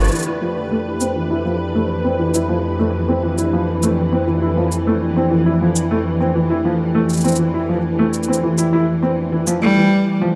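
Dark and steeped in plate reverb, this intricate, playful IDM excerpt at 101 BPM in F lydian lays a silky, chorused string machine holding Fmaj7 beneath felt-muted upright piano arpeggios roughened by 12-bit sampler grit, low-pass filtering with a sweep, and digital delay, while an electronic shaker with tape echo runs until 9.6 s, when a single focused, bowed cello enters on a vibrato G3 over a D9sus4 chord.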